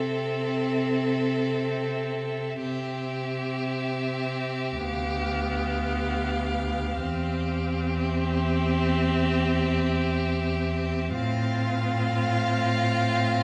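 In free time, this slow romantic movement for string quartet unfolds in a lyrical, serene mood, a brief passage cut from a longer piece. A single violin carries the high melody, bowed with vibrato and expressive portamento and set at a distance, while a second violin plays a focused inner line up front, the viola adds smooth-topped accompaniment, and the cello supplies an even, rich bass. The quartet sits in a wet recital hall, heard from further back, and moves through Am/C, G7/D, C/E and F/A across its 13.4 seconds.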